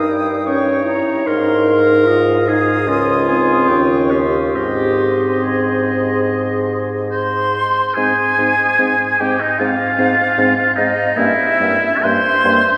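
A wet cathedral reverb fills this church or concert hall recording, a fragment of a slow, lyrical romantic movement for wind quintet in Ab major, moving with rubato at 67-78 BPM in 4/4. An airy, close-miked concert flute carries the expressive melody with vibrato and a soft attack, while a distant, roomy oboe with light vibrato sings a second line. A clear clarinet and a mellow, smooth-topped French horn fill in the accompaniment over a close-miked bassoon bass with a warm tone and light vibrato, and a new section begins at 8.0 s.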